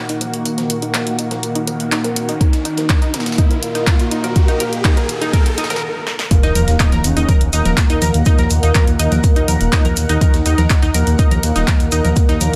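Lightly reverberant digital ambience frames this dramatic, melancholic melodic techno excerpt in Eb minor at 123 BPM, where a fat, vibrato-tinged analog lead and a tight, driving sequenced arpeggio build through filter sweeps over a lush phased pad, all three pumping against the sidechain. A punchy overdriven drum machine, a very quiet gritty breakbeat kit and an electronic riser join them, and a deep up-front kick arrives at 2.4 seconds. A brief stop and drum fill then give way at 6.3 seconds to a drop with an impact, a grainy tube shaker and a dark, rumbling detuned saw bass.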